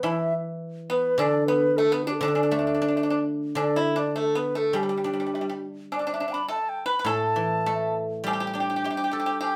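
Pastoral and festive, this short passage cut from a longer piece is Chinese traditional chamber music in the D zhi mode. It moves at 103 BPM in 2/4 with a loose, rubato feel, tuned slightly high to A4 = 441 Hz. A low bamboo xiao carries the melody from start to finish; it is close-miked, pure and reedy, with vibrato and tongued notes. Beneath it, the pipa adds a dry, percussive second line played with fingerpicks, while the guzheng supplies a ringing, silvery accompaniment that sits up front. A woodblock with a live-room character adds percussion in the background, and the ensemble is set in a wet studio reverb heard from further back in the room, with the music shifting into a new section at 3.6 seconds.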